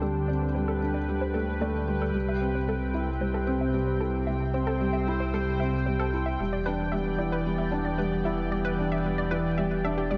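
Soaked in a lush hall reverb, this dusky, enveloping electronica excerpt sits in A minor at 113 BPM in a straight 4/4, with a cinematic, moving mood. A thick, detuned unison pad holds sustained chords with a slow attack and a chorus shimmer, moving from D7sus4 to Am7/C at 2.1 seconds and Em7 at 6.4 seconds. Up front, a felt-muted upright piano plays a soft, intimate riff in its mid register, its mellow tone trailed by digital delay. Above it, a round, bright analog pluck spins arpeggios coloured by ring modulation, chorus and delay, with a filter sweep running across the whole passage. Underneath, a deep, rumbling detuned saw bass beats and sustains, grounding this fragment of a longer piece.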